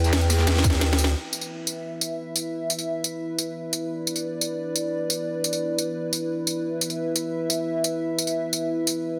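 Dark technical drum and bass with an aggressive, mechanical mood, this excerpt opens on a drop where an overdriven, growling bass and a crunchy, gritty breakbeat kit in the background play for the first 1.1 seconds, joined by a drum fill and a brief, tight, overdriven electronic kick hit around 0.6 seconds, while an up-front drum and bass kit with cracking snare and bright hats drives on under a deep, moody, detuned analog pad with sidechain pumping that sustains chords in a lush hall until 9.2 seconds.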